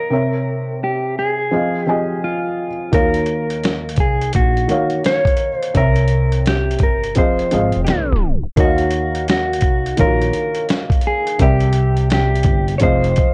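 Melancholic and reflective, this lo-fi hip hop fragment opens with a dark, clean electric guitar carrying the melody through spring and plate reverb over a soft, felt-muted upright piano whose action noise sits up close. At 2.9 seconds, a compressed sampler-style drum kit with a thumpy kick and vintage 12-bit grit arrives alongside a woody pizzicato upright bass on gut strings, swinging over minor seventh and dominant chords. Worn cassette tape colours the recording with warbly pitch drift, and a tape stop at 7.9 seconds leads into the second section.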